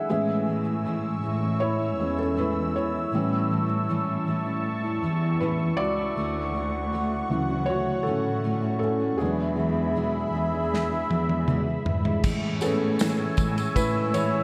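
This heartfelt pop ballad in A major at 79 BPM opens with a soft, intimate felt-muted upright piano carrying the lead, a detuned sawtooth pad with chorus and phaser, and a full-bodied fingerpicked jumbo acoustic guitar, while a woody, bowed cello section with vibrato holds the bass as the chords move from Amaj7 through A7 and Dmaj7 to E7. A dark studio drum kit with a tight kick and gated reverb enters at 10.7 seconds with a fill, and a jingly tambourine sits in the background from 12.2 seconds as the music returns to Amaj7. A lush hall reverb and bright 1980s-style digital production frame this emotional excerpt from a longer piece.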